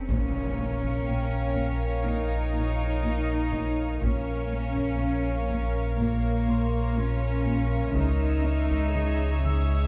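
Cinematic suspense film score at 61 BPM in Bb dorian, ominous and uneasy, with a deep, clean sine sub bass drone and a bowed double bass section anchoring the low end, while two close, intimate cello sections carry a bass line and a riff beneath a floating viola accompaniment, a dark violin melody set back in the mix and a rich, distant second violin line, all played sul tasto. Very quiet, dry taiko hits run throughout, a background electronic swell and impact in the first 4.0 seconds adds tension, a mellow, ringing vibraphone with soft mallets and fast motor vibrato enters at 1.1 seconds, and a high chamber violin section joins at 8.0 seconds as the harmony moves from Bbm to Dbm. The dark production sits in a moderate scoring stage reverb, and the piece is cut from a longer work.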